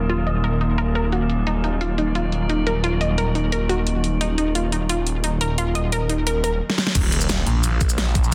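Dense, heavily limited and low-pass filtered with light digital ambience, this excerpt of dark, mechanical technical drum and bass at 175 BPM in Eb minor opens on an Ebmadd9 chord voiced by an eerie, warbling metallic drone with chorus, a lush, punchy unison pluck playing arpeggios through tape echo, and a swirling, thick, saturated detuned saw bass up front with phaser and overdrive, all three pumping to the sidechain, while a dubstep kit of huge snare, bright hi-hats, cabasa and crash runs under a filter sweep, fills at 6.7 seconds, and drops at 7.0 seconds as a knocking, tape-warm electronic kick and a very quiet impact arrive.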